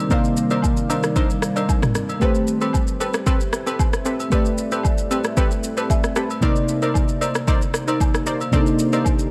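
Soulful and deep, this amapiano excerpt sets a mellow, round FM electric piano, with a brief fill from 5.6 to 6.4 seconds, over a moody, detuned ambient pad with sidechain pumping, beside the up-front deep kick of an electronic deep house kit with rim click, shaker and toms, while punchy, bright chord stabs carry tape echo and agogo bells and woodblock sit close in the background, all moving from Cm9 to Am9 and back in a light digital ambience.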